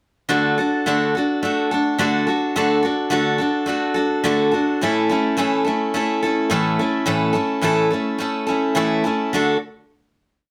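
A bright, picked steel-string dreadnought acoustic guitar sits up front and carries this short rock piece entirely on its own, entering at 0.3 seconds. It strums steady eighths in open chord shapes, moving from D to A and back to D at 106 BPM in a straight 4/4. The single verse runs until 9.3 seconds, where the guitar lands on a final D chord that rings until 9.6 seconds, keeping the piece in D major between A2 and A4. The mood is warm and open-road. A moderate studio reverb gives the strumming a natural sense of space, and the tuning sits just under standard pitch at A4 = 439 Hz.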